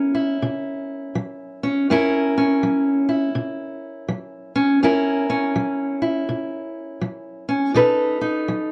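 Blues for solo fingerpicked steel-string acoustic parlour guitar, dark and boxy and up front in a small room, swaggers along at a laid-back swing over F#7 before moving to B7 at 7.7 seconds, in a short cut from a longer piece marked by lossy compression artefacts.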